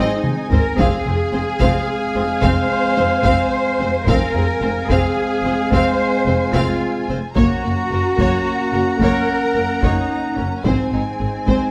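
Epic orchestral film score in a rolling 12/8, this short passage from a longer piece feels relentless and grand, opening on a taiko drum fill played with heavy sticks in a small room. A symphonic violin section carries the melody high and smooth with light vibrato, while a lush studio violin section sings an expressive second line beneath it with a soft attack. A dark French horn section sustains chords, a present solo trumpet punctuates with stabs, and a viola section adds portamento-laced accompaniment in the background. Up front, the cello section and a distant double bass section anchor the low end with even, bowed tone. The harmony moves from Ab to Fm, shifting to Gb at 7.4 seconds and back to Ab at 10.6 seconds, all captured with close, detailed microphones and light reverb.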